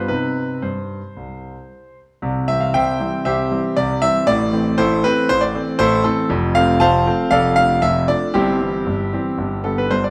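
In a straight four-four pulse, this graceful, playful fragment of a classical-period sonatina features a solo concert grand piano, clear and natural with a deep bass and placed up front, ringing through a lush recital-hall reverb as its harmony opens on a minor chord at 0.1 seconds before brightening to a major chord at 2.2 seconds and moving on toward a closing dominant.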